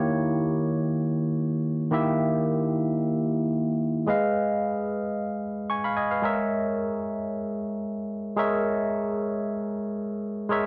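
A dark production set in a large studio reverb frames this short disco passage in free time, cut from a longer piece, in G# minor with tuning at A4 = 439 Hz. A solo tine electric piano carries all 10.7 seconds, up front and barky, with a bright, lightly overdriven combo-amp bite and a phaser coloring its tone across a range from D#3 to C#6. The mood is driving and glamorous as the harmony moves from D#7b9 to G#m6 at 4.1 seconds and on to A#m7b5/G# at 6.2 seconds.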